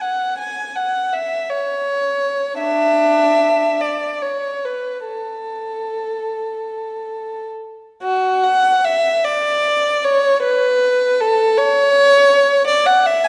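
Moving freely in a rubato 6/8 that drifts between 31 and 57 BPM in dotted quarters, this mournful, yearning classical excerpt is a solo for unaccompanied violin, tuned to A4 = 444 Hz and cut from a longer piece. The single bowed violin sits close and up front, its intimate sul tasto tone airy and soft in attack with light vibrato, ranging from D4 to G#5 across two statements of the same section, the second beginning at 8.0 seconds. A moderate scoring-stage reverb with a 1.6-second decay surrounds the instrument.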